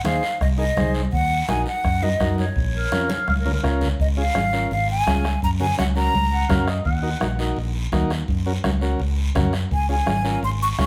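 A breathy, hollow jazz flute carries the melody over reedy combo organ, a round, dark fingered electric bass, warm congas, a raspy guiro and a close, dry bombo in this fiery, danceable cumbia cut from a longer piece. A distant, whispered clarinet with subtone and scooped notes slips in briefly at 2.8 seconds, just before a drum fill leads into the second section, and again at 6.3 seconds. The flute drops out after 6.6 seconds and returns at 9.7 seconds, while the band plays together in a moderately reverberant large studio room.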